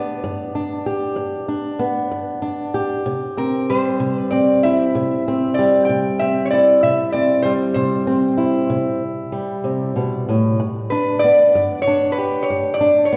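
A nasal, metallic lap resonator guitar played with slide and fingerpicks carries the melody up front from the start, over a dark, boxy, fingerpicked old ladder-braced acoustic guitar, in a rollicking, gritty piece of acoustic country blues at 64 BPM in a straight 12/8. The harmony moves from G to C at 3.1 seconds and back to G at 10.6 seconds, with tuning set slightly high at A4 = 443 Hz. A wet reverb with the long decay of a church or concert hall surrounds this short passage cut from a longer piece.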